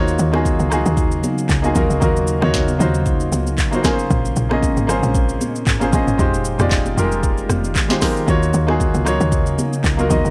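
Amapiano with a soulful mood and real depth, this short excerpt is cut from a longer piece and moves with a gentle swing in 4/4. A clear, polished concert grand piano sits up front with short-sustained accompaniment, while a glassy FM pad hovers in the background, its slow-attack, ethereal tones softened by ensemble chorus and built-in reverb. The woody log drum bass carries the low end with punchy, fast-attack, decaying notes roughened by tube saturation. An electronic afro-pop kit, tape-tinged and up front, drives the groove with a deep kick, sharp snare, smooth hi-hats, handclaps, rim clicks and shaker, while thick-skinned, high-tuned congas add acoustic hand percussion from the back of the mix. The harmony passes from Ebm7 through Bbm7 and Fm7 before returning to Ebm7 at 8.3 seconds, all captured as a dry, gritty hardware recording.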